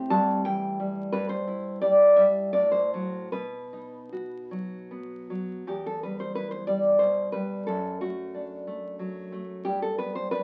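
A full-bodied, fingerpicked nylon-string guitar plays alone and up front in this brief fragment of a romantic classical guitar piece in E minor, wistful and intimate in mood, moving in a rubato 3/4 at roughly 75-92 BPM. Its deep classical tone spans E2 to A5, with finger squeak audible as the harmony moves from Am7 through a diminished chord to B, then settles into Em, D/F# and G after 5.7 seconds. A small room lends moderate reverb, and the sound carries the crackle of a very old 78 rpm record.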